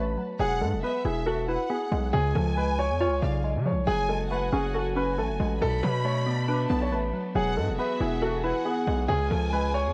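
Menacing and ominous, this half-time hip hop excerpt at 138 BPM sets an up-front dark grand piano melody over a distorted, heavy 808-style bass and a glassy, detuned wavetable pluck with chorus, while a lush violin section with vibrato and tape echo enters at 0.4 seconds and a distant, bowed string section adds soft sustained chords from 3.9 seconds, all wrapped in light studio reverb and the warbling pitch drift of worn cassette tape.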